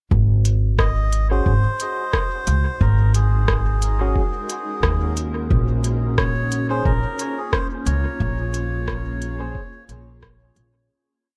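Meditative and deep, this ambient dub piece at 89 BPM in Bb minor rests on a woody pizzicato upright bass line up front and a soft, muffled kick, while a sparse, crisp hi-hat and rim-click beat trails dub echo, a reedy melodica spins call-phrase motifs through echo from 0.8 seconds, a barky tine electric piano drops filtered, echoing chord stabs, and a cloudy granular pad with 12-bit sampler grit drifts in at 2.0 seconds over shifting chords, all inside a dry, echo-heavy mix that fades out from 7.3 seconds.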